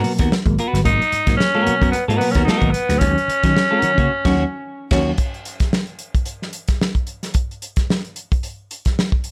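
A cool, hypnotic funk excerpt in G# minor at 111 BPM, with a light sixteenth-note swing, opens on a dry, tight-kicked soul drum kit with dark cymbals, a twangy clean electric guitar bathed in plate reverb, a dark background guitar riff with ensemble chorus and reedy electric piano stabs shimmering with fast tremolo over G#m9 and D#m7. It is soon joined by a growly, bright slap bass and, from 0.9 s, a raspy, gritty tenor saxophone melody up front, before a band accent at 4.1 s gives way to the drums playing alone from 5.2 s.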